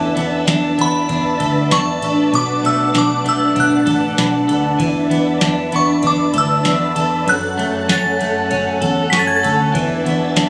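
A booming analog drum machine with a deep kick, tonal snare, ride cymbal and tambourine sets a straight 97 BPM 4/4 pulse from 0.2 s in this ethereal, dreamy dream pop fragment, where warbling organ-like ensemble string chords sit up front, a clean electric guitar picks arpeggios through lush chorus and delay, a dark, round, foam-muted picked bass holds the low end, a very quiet, slightly out-of-tune celesta adds delicate sweetness, and a glassy, crystalline FM synth bell carries the melody from 0.8 s to 9.4 s over E7sus4, Bm7 and F#m chords, all heard as if captured on a phone in a club with light reverb.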